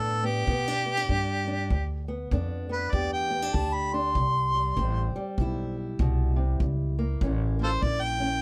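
Close, detailed microphones and little reverb give this laid-back, soulful slice of acoustic country blues an intimate, dry sound, cut from a longer piece. At 98 BPM in 4/4 with a loose swing on the eighth notes, it sits in G mixolydian and moves from G to C at 4.2 seconds, then touches a C#dim7. The harmonica takes the solo up front, its warm, smooth-topped tone shaded with light vibrato, scooped notes and tongue slaps in a jazzy style. Beneath it, a parlour steel-string guitar is fingerpicked with a dark, boxy character, while a pizzicato upright bass on gut strings sounds woody and thumpy near the front of the mix. A natural, punchy kick played with brushes sits in the background from 0.5 to 8.0 seconds.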